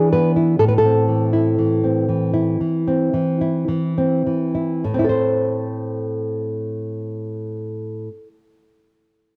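A nylon-string classical guitar, thumb-plucked and up front, carries this passionate, melancholic romantic fragment in A minor on its own from 0.0 to 8.3 seconds, moving from E7 to Am at the start and ranging from A2 to C5. The rubato pulse drifts between 51 and 68 BPM in 4/4, slowing down through the opening 4.8 seconds before a new section begins. Finger squeaks, a cassette tape grain and a light, small-room reverb give it the intimate feel of a home recording, tuned to A4 = 439 Hz.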